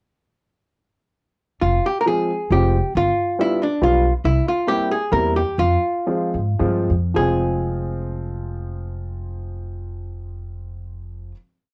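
This musette waltz in F harmonic minor has a nostalgic, bittersweet mood and moves with rubato between 102 and 140 BPM in 3/4, slowing from 4.2 s before settling onto a final chord at 7.2 s. An up-front hollow-body electric archtop guitar, dark, clean, picked and compressed with a cassette-tape tint, carries a motif-based melody in period phrases. Beneath it, a thumpy pizzicato upright bass with steel strings and transformer saturation plays root and fifth on the main beats, and a woody upright piano, also on cassette tape, enters at 2.1 s with close-voiced backbeat chords, all in a homely cassette recording with light reverb.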